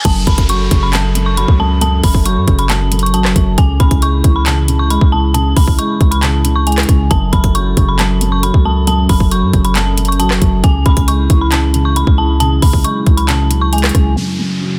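Up-front trap drums with a hard-clipped kick, metallic hats, handclaps, rim clicks and crash cymbal anchor this dark, brooding half-time hip hop excerpt alongside a deep, boomy 808-style bass and a boxy concert grand piano, while an eerie, inharmonic detuned synth bell carries the melody through chorus and digital delay above a soft, breathy pad in the background, and a reverse cymbal and downlifter appear in the first 3.6 seconds and again from 14.2 seconds in a dense, heavily limited modern master.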